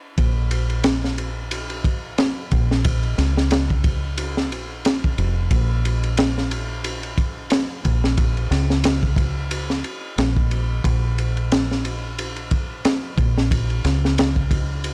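Trip hop with a hypnotic, melancholic mood, this swung 4/4 cut from a longer piece pairs a deep, foam-muted fingered electric bass, round and punchy in its low register, with a crunchy breakbeat kit of punchy kick, high-tuned snare and dark ride cymbal, its top rolled off, sitting up front in a small room. Both run from 0.2 to 14.9 seconds on a dry, gritty cassette recording.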